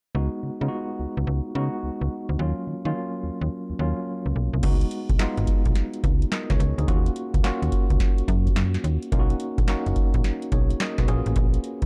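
New jack swing R&B at 107 BPM with a punchy, confident swing, cut from a longer piece, where a worn, slightly out-of-tune tine electric piano heard through built-in speakers and a snappy, metallic FM slap bass carry the opening over chords such as Db9sus4 and Ebm9, until a booming analog drum machine with a deep kick, crisp snare, handclaps, metallic hats and crash cymbal enters up front at 4.6 seconds, all within a dark, dry production.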